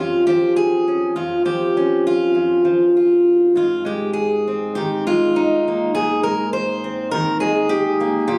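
Folk fingerstyle in a melancholic, haunting mood, this brief excerpt cut from a longer piece features a solo fingerpicked steel-string jumbo acoustic guitar, full-bodied and up front with light reverb, played rubato in 4/4 across a range from F2 to C5, moving from Db/F to Abadd9 at 3.5 seconds, captured on a phone in a room with a club-like ambience.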